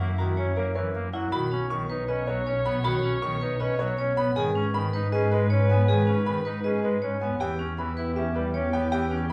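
A hypnotic, propulsive stretch of minimalist classical pattern music opens at once with its full ensemble, moving at 158 BPM in a straight 4/4 in B major. A clear, slightly boxy baby grand piano carries the melody in its upper register, while a vibraphone struck with hard mallets spins ringing, metallic arpeggios with its motor off, giving a vintage, band-limited shimmer. Alongside them, a soprano saxophone plays a second line in a classical style with light vibrato, sounding distant and roomy, and a pipe organ's oboe stop supplies soft reed accompaniment with baroque voicing and a touch of chiff. A chamber double bass section, bowed with expressive vibrato and a soft attack, anchors the low end from up front in the mix. After a brief opening on F#7, the music settles at 1.3 s into a longer passage that moves through Bsus2, G#m and Em, all set in a large studio reverb that places the listener further back in the room.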